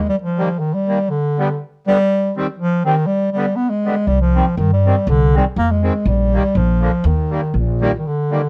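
Alpine folk in a bouncy, festive alpine dance band style, this short cut from a longer piece moves at 121 BPM in a swung 2/4 and winds through Eb major chords toward a Bb-to-Eb close. A warm, smooth-topped bass clarinet carries the melody up front in a classical-style solo across the whole 8.5 seconds, while a sweet, reedy accordion with light tremolo tuning fills in the accompaniment from 0.4 s and a woody pizzicato upright bass with steel strings and transformer saturation joins properly at 4.1 s. Light reverb and the worn, warbling pitch drift of old cassette tape give the sound an aged, homespun character.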